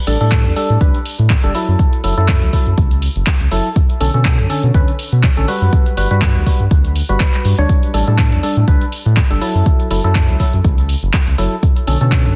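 A hollow, percussive organ stab, thickened by lush chorus and trailing dub echo, pumps against a round, dark analog bass over a deep, tape-warm electronic kick and punchy drum-machine handclaps and hi-hat in this smooth deep house excerpt at 122 BPM in B minor, swung 16ths and a dry, dense master carrying chords from A7sus4 through F#m7, Bm9 and Gmaj7.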